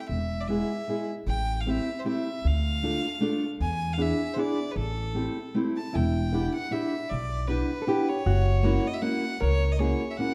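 Whirling and nostalgic, this musette waltz in A minor swings along at 155 BPM in 3/4, with a woody pizzicato upright bass and a dark, fingerpicked steel-string acoustic guitar sitting up front beneath a bright bowed violin melody with light vibrato and an airy, earthy tone. At 5.9 s the harmony turns toward Em7 and F#7 as a clean, dark hollow-body electric jazz guitar enters with a second line. A moderate recital hall reverb and a dark, warm production round out this passage cut from a longer piece.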